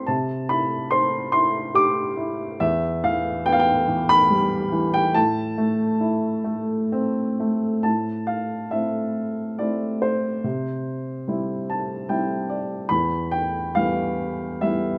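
Classical, lyrical solo piano in A minor, this dark and wistful piece moves in 3/4 at a rubato pace of roughly 61-75 BPM. A single upright piano carries the whole 15-second excerpt, its tone mellow, woody and vintage, sitting up front across a span from E2 to D6. The harmony drifts from C to Em to Am in the opening section, then returns to C and Em after the second section begins at 7.9 seconds. At 11.3 seconds the piano adds a brief fill that lasts until 12.9 seconds. Close, detailed microphones capture a smooth sound, framed by a light reverb, and the passage is cut from a longer piece.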